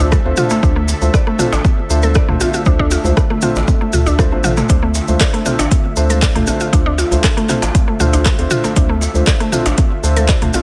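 A driving, hypnotic afro house excerpt cut from a longer piece, opening on a Dm7 chord and running roughly ten seconds. An overdriven electronic kick sits up front with a deep punch, joined by a layered deep house kit of metallic hi-hats, handclaps, rim clicks and toms that adds a short drum fill at 4.3 seconds. Around them, ringing congas sit very quietly and close, a hard-hit djembe with metal rattles sounds distant in a large room, and a grainy, band-limited cabasa adds a vintage shimmer. A round, dark analog bass anchors the low end, while a woody, detuned mallet-like pluck spins arpeggios through chorus and digital delay, and a felt-muted upright piano offers soft, mellow stabs with short sustain and its own delay. Behind them a smooth, detuned sawtooth pad holds sustained chords with chorus and tremolo, and the pad, pluck, piano and bass all pump against the sidechain under a light small-room reverb.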